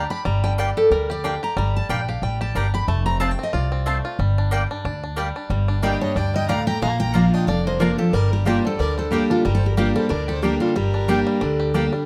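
A swung eighth-note feel in four drives this haunting, driving bluegrass passage, cut from a longer piece. A thumpy pizzicato upright bass sits up front, while a full-bodied jumbo acoustic guitar picks the accompaniment and a mandolin with double strings adds bright, woody stabs. A twangy, percussive banjo played with fingerpicks carries the melody in plate reverb, and a steel-string guitar takes a solo through the first 5.5 seconds. At 5.8 seconds a dreadnought guitar with fresh strings steps up front with its own melody, also in plate reverb, while a clear, earthy fiddle with light vibrato bows a second line in the background. Close, detailed microphones and a light touch of room reverb keep the sound intimate.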